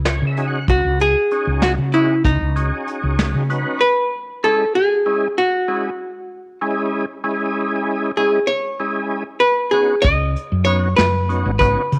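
Heard in a small room with a moderate plate reverb, this brooding, tense progressive instrumental in 5/8 at 192 BPM, tuned to A4 = 435 Hz, puts a dark, clean, picked archtop guitar melody up front over a thick, lightly overdriven tonewheel organ with key click, chorus vibrato and slow rotary speaker that opens with a short fill, while a growly, woody fretless bass with transformer saturation and lush chorus and a vintage brush kit with a punchy kick play together. The harmony moves from C#m7 through B6/C#, and the bass and drums drop out at 3.6 seconds, just before it settles on Badd9. They return at 10.0 seconds for the close of this fragment of a longer piece.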